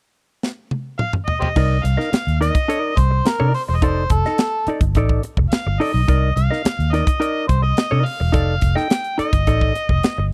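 An overdriven, gritty harmonica takes the lead in this cool, sly funk excerpt, riding vibrato with tongue slaps and scooped notes. It enters at 1.0 seconds, midway through a tight drum fill with a high-tuned snare that opens things at 0.4 seconds. From 1.6 seconds a dark, foam-muted fingered bass sits up front with the tight kit, while a clean, compressed semi-hollow guitar adds warm, hollow-body accompaniment over a Cm9 to F13 vamp. The sound is dry and close, a small room giving it a 1970s studio feel.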